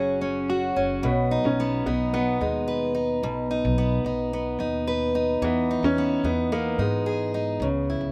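Acoustic pop with a heartfelt, easy-going mood, built on a picked steel-string acoustic guitar with audible finger squeak and a woody pizzicato upright bass, while a clean, compressed electric guitar plays a brief second line until 1.0 s before a clear upright piano with long sustain carries the melody from 1.1 s, the guitars and piano touched by slapback echo in a dry outdoor sound.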